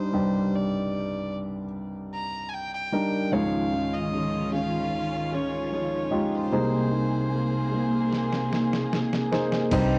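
Longing and heartbroken, this slow, straight pop ballad at 75 BPM opens on a clear, polished baby grand piano up front beneath a single bowed violin with light vibrato and a biting, earthy tone, moving through Cmadd9, Dbadd9 and Abadd9/C chords with a cassette-tape cast, light reverb and the ambience of a home recording. At 3.3 seconds a soft-attack studio string section enters with intimate sul tasto sustained chords, joined by a fingerpicked steel-string acoustic guitar with fresh strings and finger squeak playing arpeggios in the background. A muffled, pitched-down, overdriven sampler-style drum kit with a thumpy kick plays a fill from 8.1 seconds, and a round, foam-muted electric bass and a very quiet, jingly tambourine arrive at 9.7 seconds as this excerpt from a longer piece ends.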